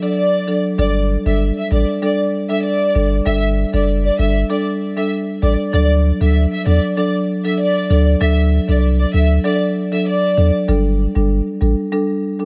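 Dancehall at 97 BPM in a straight 4/4, this short excerpt cut from a longer piece has a bouncy, sunny mood. A lush symphonic violin section carries the melody in a narrow high register, its bowed ensemble tone smooth and even with vibrato and a touch of tape echo, until it stops at 10.5 seconds. Underneath, a woody marimba played with medium mallets on rosewood bars supplies up-front accompaniment across the whole clip. A deep sine-based sub bass enters at 0.8 seconds with a punchy, pitch-drop attack, sustaining mellow low notes that sit prominently in the mix. The harmony moves simply between D and Gsus2, and a small room ambience gives the close, present parts a bit of space.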